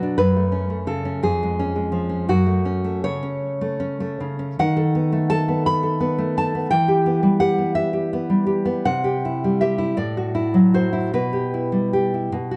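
A full-bodied, fingerpicked nylon-string guitar plays alone and up front, finger squeak audible, in this melancholic, passionate fragment of a romantic classical guitar piece. It moves in a rubato 6/8 at 49-58 BPM from F#m harmonies into E minor at 4.6 s, then passes through C and D9/A, wrapped in the moderate reverb of a recital hall with a dark, warm sound.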